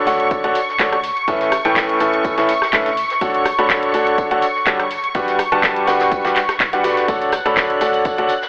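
Heard through a narrow, telephone-like filter with a light small-room reverb, this feel-good, euphoric piano house passage at 124 BPM in D major is cut from a longer piece. A clear, intimate baby grand sits up front playing a riff with audible action noise and vintage 12-bit sampler grit, tape echo and sidechain pumping, over a silky, detuned analog string pad with ensemble chorus and a dark, hollow, organ-like FM bass in the background. A punchy electronic kick, a layered house kit of handclaps, hi-hat and rim click, and a background brush kit with a rolled-off top carry the swung groove, while a tambourine slips in at 7.1 seconds as the chords return to Dmaj7.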